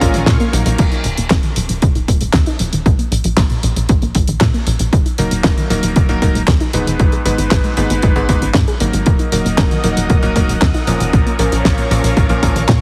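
A punchy, tape-warm electronic kick and a dry, damped 70s kit with fat snare, handclaps, hi-hat and crash drive this nostalgic, danceable italo disco excerpt at 116 BPM in Eb minor, where a tight sawtooth sequencer bass pulses under soft, warbling pluck arpeggios with chorus and delay, clangy electric grand piano stabs that return at 5.2 seconds, a brief brilliant grand piano melody with tape echo at the very start, and lush string-machine chords with ensemble chorus and sampler grit that come back in at 9.1 seconds, all set in light studio reverb with a heavily compressed radio sound.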